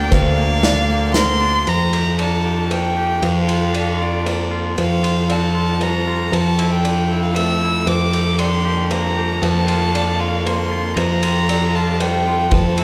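In a straight 3/4, a loose indie drum kit with a punchy kick and dark cymbals carries this cinematic, hopeful post-rock passage, while an up-front fuzz-overdriven picked bass anchors the low end, a clean, twangy fingered electric guitar and a mellow felt-muted upright piano with audible action noise weave arpeggios beneath an intimate, airy sul tasto violin melody with light vibrato, and a very quiet, lush studio string section holds sustained chords at the opening and returns at 7.9 s, all set in the moderate bloom of a concert hall.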